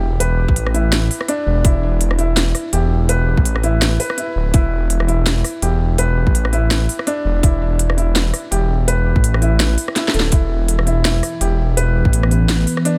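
Half-time drum and bass with a spacious, heavy mood, swung lightly and set in a dry, close room. A felt-muted upright piano plays soft, mellow arpeggios through a delay, its thin, vintage tone giving the track an intimate centre. Beneath it, a dark detuned sawtooth bass rumbles up front, deep and saturated, with a beating edge from the detuning. The drum kit brings a cracking snare, crisp hats and rim clicks, while a separate tight, tape-warm electronic kick sits prominently, and a short drum fill arrives at 10.0 s. At 11.3 s a moody, full-bodied ambient pad slips into the background with slow-attack sustained chords, chorus, built-in reverb and sidechain pumping, just before this cut from a longer piece closes.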